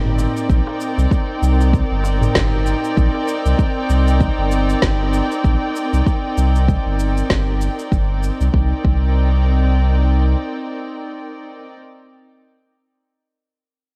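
Earthy and unhurried, this organic downtempo fragment in C minor moves at 97 BPM in 4/4, with a 16th-note swing giving it a loose, human sway over a single Cm9 chord. An up-front chamber string section carries sustained bowed chords between C4 and G5, its rich, smooth-topped ensemble tone touched with light vibrato and a sidechain pumping that makes the harmony breathe against the beat. Beneath it, a round, sine-like sub bass sits up front in the G1 to C2 range, deep and mellow with a fast attack, and drops away at 10.4 seconds. The rhythm combines a layered, produced electronic kick with a deep punch, an electronic shaker and a woody snare, while a clay-shelled darbuka played with soft hands adds a close, dry, natural-skin texture in the background only until 3.3 seconds. Light reverb and studio ambience frame the mix, and a worn cassette quality with warbly pitch drift lends the whole recording a warm, slightly wavering character. 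The shaker and snare stop at 8.5 seconds as the passage shifts into a sparser closing stretch, leaving the strings to sustain alone toward the end of this cut from a longer piece.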